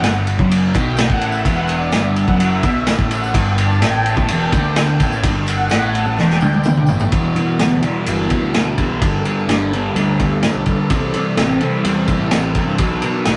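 A rough rehearsal-room recording with a moderate small-room reverb carries this trippy, hypnotic psychedelic rock fragment, cut from a longer piece, where an up-front, double-tracked fuzz guitar plays its riff over a round, punchy overdriven picked bass. Soft-attack sawtooth string-machine violas, coloured by phaser and ensemble chorus, take a solo through the first 7.1 seconds before a gritty vintage drum kit with dark cymbals and a rolled-off top plays a fill into the second section. A jingly, very quiet tambourine sits beneath it all as the chords move from Emadd9 through Gadd9 and C6 to Bm.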